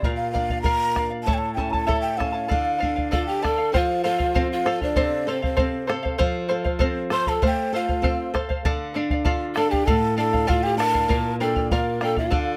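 Close, detailed and lightly reverberant, this melancholic, wistful Andean folk excerpt at 98 BPM in 2/4 sets a hollow, mellow wooden quena melody over shimmering fingerpicked charango, an up-front flamenco guitar with audible finger squeak and a deep, dry bombo, while a reedy bamboo pan flute with vibrato, a soft attack and chiff enters at 3.1 seconds to add a second line as the chords move from Bb, A and Dm to F.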